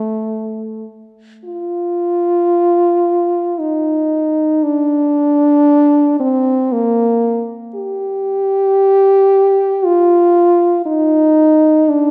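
A mellow French horn plays alone in free time from the start, its light vibrato and classical phrasing set up front in a moderate concert hall reverb that gives this dark, mournful, meditative classical fragment its warmth.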